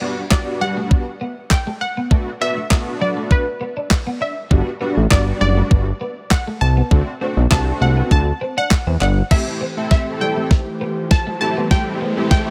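Dance-pop at 100 BPM in G major, summery and euphoric, cut from a longer piece: a glassy wavetable pluck carries the melody through chorus and dub echo over a big, bright detuned polysynth with sidechain pumping and a twangy, clean twelve-string electric guitar riff, while a 12-bit digital drum machine with a thumpy kick sits up front, a fat sawtooth analog bass with a filter sweep joins at 4.5 s, and at 9.3 s a smooth analog pad enters for a build-up with a drum fill and an electronic riser in the background from 10.7 s.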